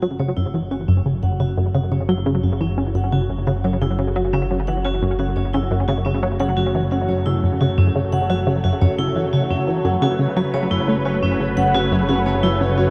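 A tight, driving sequenced synth riff with a detuned sawtooth pluck sits up front from the opening, over a fat, thick analog bass holding F#1, while a swirling phased pad, a ringing hard-mallet vibraphone and a pulsing gated texture gradually fade in across the full 12.9 seconds. This hypnotic, cosmic space-music passage, cut from a longer piece, moves at 87 BPM in 4/4 and rests on a single F# minor chord. The airy pad carries phaser and chorus, the dark, metallic vibraphone arpeggios drift through tape echo with slow motor vibrato, and the tempo-synced texture pulses quietly in the background, all bathed in a huge ambient reverb.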